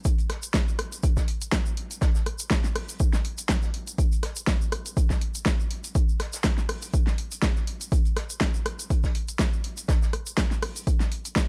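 House groove with a deep, warm mood and a light swing on the sixteenths, built from a punchy, up-front electronic kick, a layered deep house kit with hi-hat, rim click and fat snare, a grainy, bright egg shaker played close and dry, and a mid-forward acoustic soul kit of hi-hat and medium-tuned snare sitting in the background with a rolled-off top and pumping hats, all in a small room ambience across this short cut from a longer piece.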